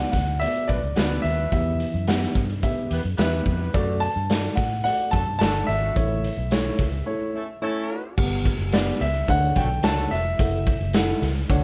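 A gritty, saturated garage drum kit sits up front in a bright stone room, driving this joyful, uptempo 1960s-style soul cut at 108 BPM in D major, with a round, foam-muted fingered electric bass underneath, a dark, boxy grand piano carrying the melody with audible action noise, a woody, mellow upright piano in accompaniment, and a loose horn section with light vibrato playing a second line from 0.7 to 10.2 seconds, set in light reverb and vinyl crackle, with a break at 7.1 seconds before the harmony shifts to Gmaj7.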